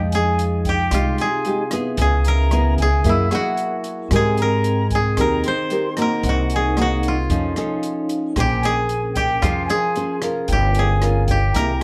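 A dry, woody koto, plucked with fingerpicks, carries the melody up front in this intimate, melancholic bossa nova excerpt in F minor at 113 BPM. Fingerpicked classical nylon-string guitar and a growly pizzicato upright bass support it. A mellow vibraphone with soft mallets and motor vibrato rings in the background, alongside an expressive, close-miked silver flute second line that enters at 0.1 s. An open jazz kit with hi-hat, rim click and a boomy kick keeps time under a dark, warm production with light reverb, moving through chords such as Fm9, Abmaj9 and F7b13.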